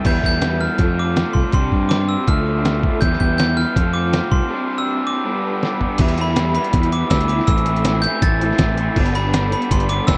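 Two lo-fi overdriven garage guitar riffs, one bright and one carrying ensemble chorus, open this moody, cool indie rock cut at 162 BPM over a pitched-down, muffled, sampler-style drum kit with a thumpy kick, joined by a growling overdriven fingered bass and a dark, bell-like glockenspiel melody, while a very quiet, buzzy vintage combo organ sounds briefly at the start and returns at 3.0 seconds with sustained chords, all in a dry, close 1970s-style studio sound, with a break from 4.5 seconds capped by a drum fill leading into a new section at 6.0 seconds.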